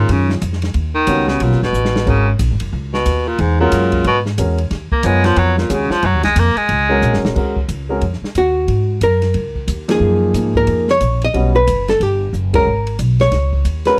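A clear baritone saxophone with light vibrato and scooped notes solos up front for the first 7.3 seconds of this moody, swinging small-group jazz piece in Eb minor at 181 BPM, backed by a woody pizzicato upright bass, a deep, long-sustaining grand piano and an airy drum kit with dark cymbals and a boomy kick, before a clean, hollow-body archtop guitar takes the melody from 8.4 seconds in a dry, close 1970s-style small-room sound.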